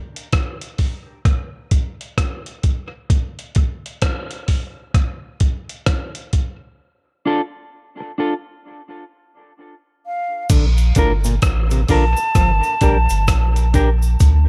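Drenched in digital ambience, this heavy, deep dub reggae excerpt opens on a gritty, compressed sampler-style drum kit with a thumpy kick, crash, hi-hat and rim click, joined at 7.3 seconds by a dark, clean electric guitar with analog chorus and dub echo, then at 10.1 seconds by a hollow, close-miked concert flute melody with vibrato, soon followed by a round sine sub bass up front, a distant cabasa, and an overdriven clav playing stringy arpeggios through a combo amp in the background, with both flute and clav trailing dub echo.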